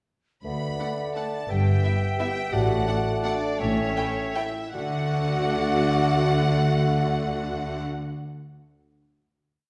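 A festive, sweeping orchestral waltz in D major opens at 0.4 seconds with a bright clarinet, a rich violin section doubling the tune at the octave, a French horn section holding chords, and cellos and double basses sounding a lush bass on the beats, joined moments later by a hollow, distant flute and a dark bassoon. From 0.8 seconds a violin section carries the melody with vibrato and portamento, while violas add after-beat chords in the background, the 3/4 pulse, between 148 and 185 BPM, flowing freely with rubato and gradually slowing. It settles onto a final D major chord at 4.7 seconds, bathed in the reverb of a recital hall.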